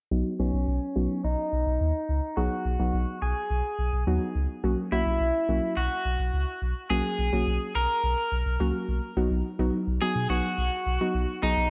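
A soft, rounded pluck with chorus and a filter sweep and a deep analog bass open this nostalgic, bright pop excerpt in B major at 106 BPM together, joined from 0.4 s by a twangy, slightly broken-up electric guitar melody with spring reverb and delay, all bathed in a lush hall and the warbling pitch drift of worn cassette tape.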